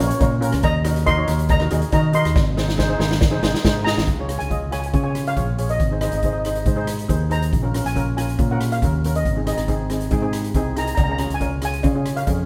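An up-front street-band drum kit, with a boomy kick and a medium-tuned snare, drives this festive, carefree calypso at 139 BPM in Db major, firing off a fill at 2.4 seconds as the passage moves from its opening phrase into a longer second part. Two double-seconds steel pans shimmer over it: one carries the mellow, airy melody with soft rubber sticks, while the other adds mid-forward accompaniment struck with hard rubber sticks. A dark, round fingered electric bass sits beneath, and a very quiet, close cowbell returns at 11.0 seconds, all heard as a live band sharing a stone room with moderate reverb in this short cut from a longer piece.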